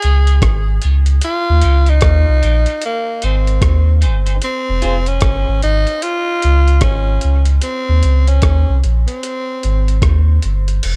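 Steeped in digital ambience, this spacious, hypnotic dub reggae excerpt rides a swung sixteenth-note feel, with a gritty, tape-warm sampler-style drum kit re-recorded in a large room sitting up front with its thumpy kick beside a deep, round sine sub bass, a clean picked electric guitar tucked in the background with filtering and dub echo until 5.0 s, and a raspy tenor saxophone solo with light vibrato, scooped notes and dub echo carrying the melody to 10.0 s.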